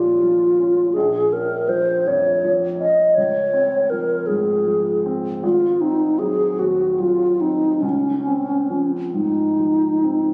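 Captured on a phone in a concert hall with a moderate 2.2-second reverb and compression, this short, rubato impressionist classical duo in Db major drifts at 42-55 BPM in a lilting 6/8, with a pastoral, luminous mood as an up-front, hollow alto flute sings the melody with vibrato and a soft attack over a smooth, vintage-toned grand piano accompaniment that moves from Ebsus2 through Bbm, Dbmaj7 and Ab7 to settle on Dbmaj9.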